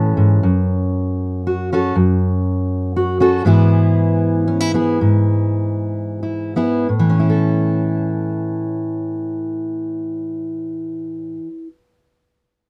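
A pastoral, warm mood settles over this short folk passage, cut from a longer piece for solo fingerpicked steel-string acoustic guitar. The playing is in 3/4 with a rubato feel, and the line ranges from F#2 up to A4, with the tuning sitting slightly below standard pitch. The dreadnought guitar sounds full-bodied and sits up front in a dry, close studio recording in the 1970s style, touched by light reverb. The harmony moves from F#m to E/G#, where the pace slows between 3.4 and 6.9 seconds, before arriving on A as a second section begins at 6.9 seconds. The guitar plays alone throughout, ending at 11.8 seconds.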